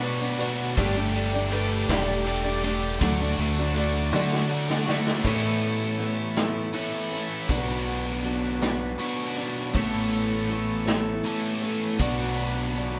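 This short excerpt sounds like a band playing live in one room, with a moderate studio reverb giving the sound a natural sense of space. It is hopeful, warm folk rock and heartland rock in 6/8, moving through Bm, Gsus2, D and Aadd9. A biting, bright overdriven electric guitar, double-tracked and up front, plays the main riff. A round, dark dub-style fingered bass sits underneath it, alongside a natural country drum kit with a medium-tuned snare, tight kick, hi-hat, ride and crash, and the drums roll into a fill at 4.1 s. In the background, a picked dreadnought acoustic guitar adds finger squeak, while a very quiet tonewheel organ holds clean, clear chords with key click and a slow rotary speaker. A brilliant, worn baby grand piano adds faint accompaniment before dropping out at 5.3 s.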